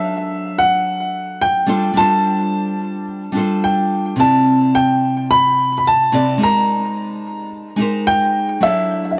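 A dark, mellow baby grand piano carries the melody up front in its upper register, touched with tape echo, over a small, fingerpicked nylon-string guitar that plays the accompaniment close by throughout. This blissful, sunny chillout passage, cut from a longer piece, drifts through lush extended chords such as G9sus4, Cmaj9 and Abmaj9 in a straight 4/4 feel. A moderate plate reverb lends the whole a soft, glowing space.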